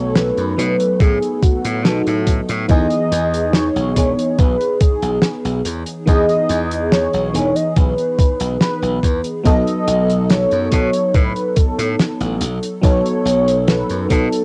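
Soaked in cassette tape character and light small-room reverb, this nostalgic, dreamy vaporwave excerpt drifts at 71 BPM in E major, where a velvety, detuned synth lead with vibrato and tape echo carries the melody over a lush FM electric piano with a soft pad layer, a bright, punchy slap bass with tube saturation, a dry soul kit of hi-hat and fat snare from 0.2 s, and a thumpy, up-front electronic kick arriving at 1.0 s, all circling B7 and Emaj7 chords.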